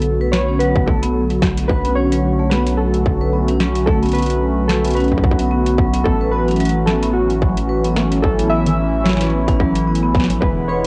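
Warbly lo-fi synth keys with chorus, 12-bit sampler grit and analog delay carry a nostalgic melody through this intricate, cerebral IDM excerpt at 110 BPM with a gentle 16th-note swing, over a hollow, flute-like pad, a round, deep analog bass with tube saturation, a booming analog drum machine with congas, metallic hats and a tonal snare, ringing vibraphone arpeggios from 0.2 s, and a distorted, up-front electronic kick from 0.8 s, all moving from Bm7 to A6 at 6.1 s inside a spring-reverb room with a cassette home-recording character.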